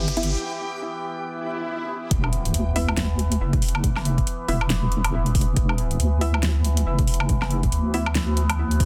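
Deep dubstep at 139 BPM in 4/4, riding a half-time feel with a 16th-note swing, this short cut from a longer piece feels meditative and cavernous. It opens with a brief build-up: a riser gives way to a break, and a swell from 1.3 seconds leads into the drop at 2.1 seconds, marked by an electronic impact. Up front, a deep, saturated wobble bass built from detuned square and sine tones holds down the low end with chorus and a dark, compressed weight. Behind it, an evolving sawtooth-and-sine drone sustains chords with resonant, moving overtones, a slow attack and its own reverb, while a muted, filtered dub chord stab plucks short detuned sawtooth hits through chorus and dub echo. The drums pair a deep, tape-warm electronic kick under a high-pass filter with a produced kit of fat snare, metallic hi-hats and woodblock, all set in studio ambience. The mix is dry and densely limited, with the bass dominating a dark, heavy sound.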